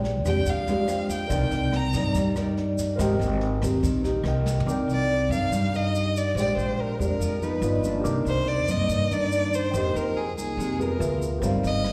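Melancholic and smooth, this bossa nova clip in C minor moves at 142 BPM in a straight 4/4, cut from a longer piece and heard as a live gig through the venue's PA with recital hall reverb. An up-front bowed violin carries the melody with vibrato, portamento and a soft attack, taking a solo in its opening phrase before returning at 4.9 seconds, its tone touched by slapback echo. Dark, thumb-plucked nylon-string guitar with fresh strings sits up front in the accompaniment, while a grand piano with short sustain stays in the background, both also carrying slapback echo. A woody, thumpy pizzicato upright bass on gut strings anchors the low end, and a grainy, mellow tube shaker runs throughout. The brush drum kit, with its boomy kick, rim click, snare and toms, plays a fill at 4.5 seconds, drops out at 4.7 seconds as the second section begins over chords such as Cm9, Bb13 and G7b13, and returns briefly at the close on Eb6/G.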